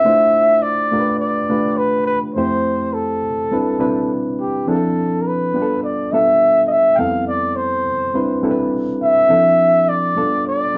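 A breathy, whispered flugelhorn carries the melody up front in an intimate pop-styled solo, its soft attacks, scooped notes and vibrato giving this smooth soul fragment a warm glow. Alongside it, also up front, a reedy, worn electric piano, slightly out of tune and heard through its built-in speakers with spring reverb, plays a lightly swung accompaniment through Dm9, G7, Fmaj9 and Cmaj7 changes, touching a Fmaj9#11 near 7.0 seconds. The duo sounds like a band playing live together in one studio room with moderate reverb.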